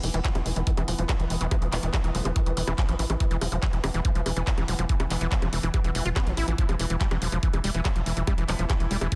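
A hypnotic psychedelic trance passage at 142 BPM on an E5 chord opens with a squelchy, distorted acid bass riff swept by a filter, with delay and sidechain pumping, a punchy sawtooth sequencer bass up front, a drum-and-bass kit of bongos, handclaps and bright hats, and a background drone of moving overtones with chorus and built-in reverb, before a knocking, layered electronic kick lands at 0.2 seconds and a very quiet, nasal vowel-sweep wobble bass joins at 1.0 second, all in a dry, dense, heavily limited modern mix.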